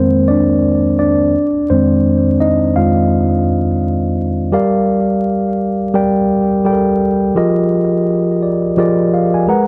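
A mellow tine electric piano carries this brief, sultry R&B fragment alone, sitting up front with a clean, direct tone and a tape echo trailing its lines across a range from F2 to Bb5. At 85 BPM in 4/4 with a swung sixteenth-note feel in F dorian, it moves from Fm7 to Gm7 at 4.5 seconds and settles on Fm11 before a closing fill from 8.0 seconds. A small, wet room ambience and a bed of vinyl crackle frame the smooth mood of this short cut from a longer piece.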